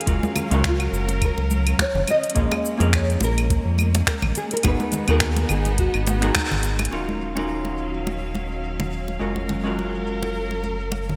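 A thumb-plucked nylon-string guitar carries the melody through ensemble chorus and delay over a dark, clean hollow-body jazz guitar and close, bowed strings with vibrato, while a smooth R&B kit of claves, finger snaps, metallic hats and shaker sits beneath filtered, tape-warmed tones. In this blissful, sunny sunset chillout fragment, a round analog bass sits deep and up front, congas are struck with hard hands close and dry, and a dry, deep electronic kick joins until a band accent at 6.4 seconds, after which the nylon guitar and kick fall away. A lush hall reverb and bright 1980s-style digital sheen frame the swung groove as its jazzy seventh and ninth chords unfold.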